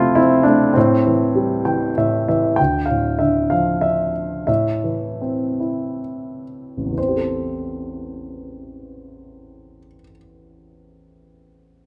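Classical solo piano in A minor, brooding and moody, unfolds in a rubato 3/4 between 57 and 104 BPM as a warm, up-front grand piano with short sustain spans A1 to G5, adds a fill from 1.4 to 2.6 seconds, slows from 2.6 seconds as the harmony moves through F, Am7, Dm and Am, and settles on Am7 at 7.0 seconds in a moderate recital-hall reverb, this brief cut taken from a longer piece.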